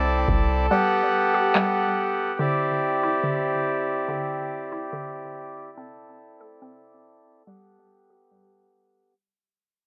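Atmospheric cloud-rap in a half-time 4/4 feel at 142 BPM, this short cut from a longer piece feels blissful and floating. A reedy, boxy accordion sits up front holding sustained chords throughout, its sound pumping under sidechain compression, while a hollow, bouncy square-wave pluck runs detuned arpeggios beneath it through chorus, tape echo and a low-pass filter. A deep, boomy 808-style bass with a sine tone lands only at the very start, and a booming analog drum machine with a deep kick and handclaps appears briefly between 0.3 and 1.6 seconds before the kick drops away. The harmony drifts from C69 to Gmaj9 and D9sus4 before circling back, and a filter sweep and fade-out run across the whole passage. The sound is dry and gritty with little reverb, a dark hardware character with the top end rolled off.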